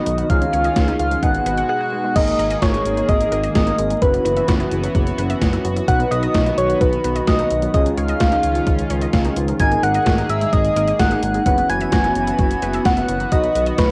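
A straight 4/4 pulse at 129 BPM drives this nocturnal synth-pop passage in G# minor, cut from a longer piece, with a gated 80s digital drum machine up front from 0.1 s, pairing a thumpy kick and a gated-reverb snare with hi-hat and crash cymbal. Beneath it a smooth synth bass with vibrato holds the low end, while an analog synth brass part, fat and dark with a filter sweep, fills out the accompaniment. A chorused pulse-width pad shimmers with a bright, retro sustain behind a very quiet resonant blip pluck that spins squelchy arpeggios. On top, a soft struck synth lead, round and keys-like, carries the melody between B4 and G#5. The chords cycle through G#sus2, F#7sus4, B and C#add9, interrupted by a brief silent gap from 1.7 to 2.2 s, and the whole mix carries the hazy feel of a home cassette recording with vinyl crackle and a moderate studio reverb.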